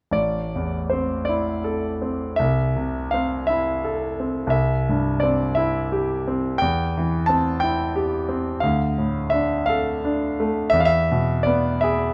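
A bright concert grand piano with deep bass and short sustain sits up front in this mournful, melancholic romantic nocturne fragment, playing alone in a free rubato 12/8 from 0.1 to 12.1 seconds through a sombre progression from Am to C, then Dm and E, within a dark production touched by light reverb.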